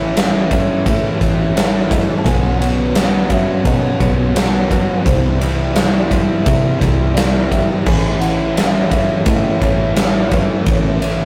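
A rough rehearsal-room recording with tube saturation and a moderate studio reverb frames this dreamy, wistful excerpt of shoegaze-tinged dream pop rock, moving at 86 BPM in a straight 4/4 through A, Bsus2 and C before returning to A. Two overdriven electric guitars carry picked riffs, one warm and the other very quiet, while a bright, double-tracked cranked stack guitar with spring reverb sits in the background. A dark, round, foam-muted vintage bass anchors the low end, a huge arena drum kit enters at 0.2 seconds up front with punchy kick, medium-tuned snare and bright cymbals, and a woody, dry marimba played with hard mallets adds a percussive melody from behind.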